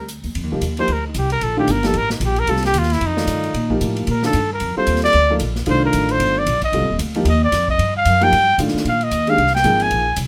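A trumpet with a light vibrato sits up front, playing a jazz-style solo from 0.4 seconds through the end of this cut from a longer piece. The music is hypnotic, searching modal jazz in F mixolydian, swinging at a brisk 226 BPM in 4/4. Beneath it, a pizzicato upright bass with steel strings sounds dark, growly and thumpy, also placed up front. A swinging big-band drum kit brings an airy, polished hall sound with hi-hat, ride cymbal, a medium-tuned snare and a tight kick. An intimate upright piano accompanies from 0.5 seconds, its boxy, woody tone carrying long sustain and audible action noise, as the harmony moves from F13sus4 to Cmadd9 and then to Bb9sus4 at 8.9 seconds, all set in light reverb.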